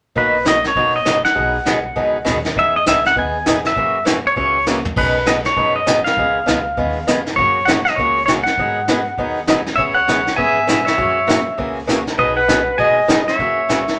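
A twangy, compressed pedal steel guitar sings the lead with slide and volume swells over a boxy, picked swing-style acoustic guitar, a woody, thumpy pizzicato upright bass with gut strings, and a distant, roomy vintage brush kit with dark cymbals and a punchy kick, all swinging playfully at 200 BPM in B major through a small room's reverb, with a drum fill at 4.7 seconds and a clear jazz-style clarinet with light vibrato and scooped notes entering at 9.8 seconds in this brief western swing excerpt.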